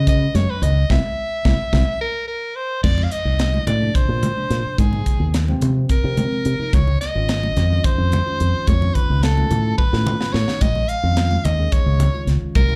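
This electric jazz fusion cut opens with an edgy soprano saxophone and a fingered electric bass arriving together, the bass bright and up front through its envelope filter, while tine electric piano and a crisp drum kit join a moment later at 0.1 seconds. Moving in 7/8 at 216 BPM with a straight feel, the music feels soaring and slick, and the sax carries the melody as a soloist with vibrato and a slapback echo and analog delay on its tone. Congas with a thick, damped skin enter at 0.4 seconds, sitting in the background, and the electric piano likewise stays back in the mix, clean and lush with chorus and slapback echo over chords moving from Db7sus4 and C7 through F7sus4, Ab69, Dbmaj9 and F7alt to Bbm7. The airy, polished drum kit, with its high-tuned snare and punchy kick, joins the whole band on an accent from 0.9 to 2.8 seconds and drops in drum fills, the first of them leading into a new section at 2.8 seconds. 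The sound is that of a live club gig heard through the venue's PA, and the passage is cut from a longer piece.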